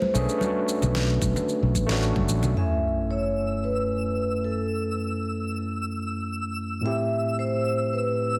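This sunset chillout excerpt moves at 112 BPM in a straight 4/4 in F# minor, with a warm, smooth mood and chords that pass from Bm9 to F#m9 and then Am9. A mellow, airy vibraphone played with soft mallets carries the melody through a delay, its ringing tone shaded by a slow motor vibrato. Up front, a gritty, overdriven tine electric piano heard through a combo amp plays the accompaniment under a low-pass filter. A bright fretless electric bass, a knocking electronic kick, a deep electronic snare with shaker, and hard-handed congas tucked in the background form a short groove that ends at 2.5 seconds. At 2.6 seconds an electronic sub drop lands as an impact and the electric piano begins a filter sweep, and from 3.1 seconds a twinkling granular texture with an octave-up FM shimmer, slow attack and long release drifts in high above. The whole track sits in a moderate concert hall reverb and has a heavily compressed, radio-like sound.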